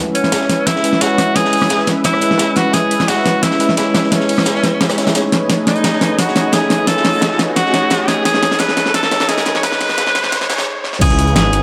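Bathed in a moderate plate reverb with small room ambience, this lush, rolling liquid drum and bass excerpt at 174 BPM in C# minor sets a bright, vibrato-laden tenor saxophone melody up front over a mellow tine electric piano and a warm, chorused analog pad on C#m7 and B13, while a pop drum kit with a fat snare and metallic hats, a gritty, dark breakbeat kit in the background and a very quiet punchy electronic kick drive a build-up with a drum fill; a faint riser enters at 5.6 s, and after a stop at 10.7 s a menacing detuned saw bass and ringing congas arrive at 11.0 s.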